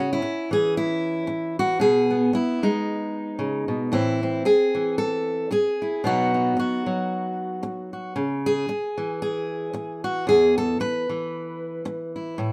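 A relaxed 4/4 pulse at 113 BPM carries a gentle swing on the eighth notes, giving this folk piece an easy, lilting feel. It is a short excerpt of about 12.5 seconds cut from a longer work, played by a single fingerpicked steel-string acoustic guitar in E major that covers the range from E2 up to B4. The guitar has a full, auditorium-style body and sits up front in the mix, while light reverb adds a touch of space. The harmony moves from C#m through G#m/B, Am and B, then returns to C#m before settling on an E5 chord at 10.3 seconds. The mood is nostalgic and warm, like a quiet reflection shared on a porch.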